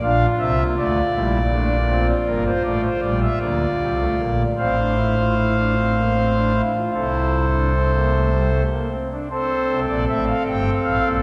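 This classical passage is a baroque-style four-part fugue for solo pipe organ, elegant and joyful in mood and cut from a longer piece. It moves at an unhurried 52 beats per minute in a flowing 12/8 with a straight feel, set in F major. The organ's foundation stops sound thick and romantically voiced, sitting up front and spanning from a deep G1 up to G5. The harmony opens on Gm7/Bb, passes through F/A and C, and reaches a settling F chord at 9.3 seconds as a brief new section begins and carries on to the end at 11.2 seconds. A long, lush church reverb surrounds the instrument, giving the hall a resonant, spacious glow.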